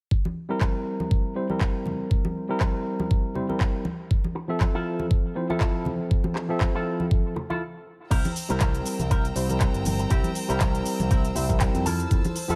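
Nu-disco at 120 BPM in 4/4 with a light sixteenth-note swing, this sunny, feel-good excerpt sits in C mixolydian, tuned slightly flat of standard pitch, and moves between C7 and Fmaj7. A knocking, tape-warm electronic kick sits up front from the start, joined by a pop drum kit with crisp hats, handclaps, shaker and crash, and by ringing congas recorded close and dry. A worn, slightly out-of-tune tine electric piano, lightly overdriven through a combo amp, carries the chords with sidechain pumping and dub echo. At 4.4 seconds a twangy, compressed electric guitar riff enters through an envelope filter with subtle chorus and dub echo, and after a brief stop, the second section at 8.1 seconds brings in a picked electric bass with an envelope filter and tube saturation alongside a smooth, bowed studio violin section holding high sustained chords with sidechain pumping. A clean electric guitar fill arrives at 11.1 seconds, and a digital ambience surrounds the whole mix.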